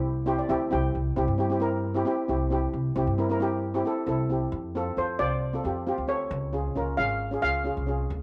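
A straight, bouncy 4/4 calypso groove at 134 BPM carries this carefree cut from a longer piece, where a shimmering lead steel pan struck with hard rubber sticks and touched by slapback echo plays the melody briefly at the start and again from 5.0 to 7.8 seconds, over a mellow, airy double-seconds pan accompaniment and a growly, woody pizzicato upright bass, all up front in a moderate echo-chamber reverb as the chords move from C to F to Dbmaj7.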